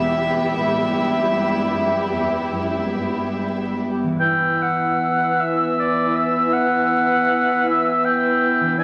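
A warm oboe with light vibrato sits up front in this solemn, elegiac excerpt from a slow romantic orchestral movement in E minor, moving at a rubato 12/8 pulse of about 47-54 BPM in dotted quarters. For the opening 4.2 seconds, floating sul tasto violin sections carry a high melody and an inner line over a dark, woody, lush viola accompaniment and a soft-attack cello bass. A ringing, fingerpicked concert harp spins arpeggios from start to finish, and then the oboe arrives alongside an airy silver flute, a distant clarinet, a background bassoon and a mellow French horn section holding sustained chords, all bathed in recital-hall reverb with a vinyl crackle.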